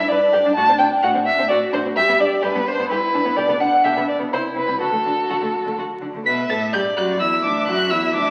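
A quick classical-period string quartet movement in triple metre, this graceful, cheerful fragment is cut from a longer piece. The first violin carries the melody up front with a rich, focused tone, vibrato and a smooth top to its highest notes, while the second violin plays a quieter supporting line with similar bowed richness. The viola fills in the accompaniment from a distance, its soft attack, portamento and expressive vibrato giving the inner voice a gentle glow. Beneath them the cello holds the bass with a clear, even sound. All four players sound together throughout, moving into a new passage at 6.3 s, and the quartet sits in a reverberant recital hall heard through the crackle of a very old 78 rpm record.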